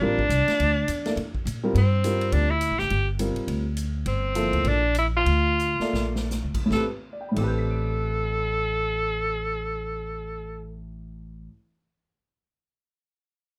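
A light reverb surrounds this short cut from a longer modal jazz piece, which swings in 4/4 at a tempo between 145 and 208 BPM and feels intense and hypnotic. Up front, a bright, forceful tenor saxophone carries the solo melody in a vintage jazz style with vibrato. A pizzicato upright bass with a woody tone and steel strings sits forward beneath it, while a warm, natural baby grand piano accompanies across a broad register. A big-band drum kit with a punchy kick, heard in a big, natural-sounding room with a medium-tuned snare, drives the swing with ride, hi-hat and crash and plays a fill at 5.6 seconds before dropping out at 7.5 seconds. The harmony rests on Gm9 before moving to Am9 at 6.7 seconds, after the music slows down.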